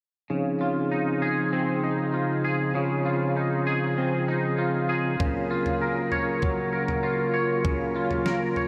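Dream pop at 98 BPM in Db major, ethereal and floating, where a mellow, flute-like tonewheel organ with slow rotary speaker holds sustained chords beside a twangy, clean electric guitar playing arpeggios through analog chorus and delay, moving from Dbmaj9 to Gbmaj7/Db as a detuned 8-bit drum machine with thumpy kick, snare and toms enters at 5.2 seconds, all soaked in a huge ambient reverb.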